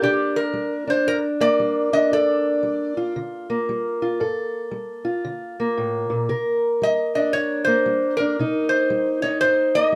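A metallic, nasal resonator slide guitar carries the melody up front, playing from the start until 3.1 seconds and returning at 6.8 seconds, its fingerpicked tone adding to the mournful, brooding mood of this acoustic country blues excerpt. Beneath it, a dark, boxy parlour steel-string guitar, also fingerpicked and up front, accompanies throughout with a swung feel over chords moving from Csus2 to Gm9 and Cm9. Close, detailed microphones and a moderate studio reverb give the duo an intimate presence.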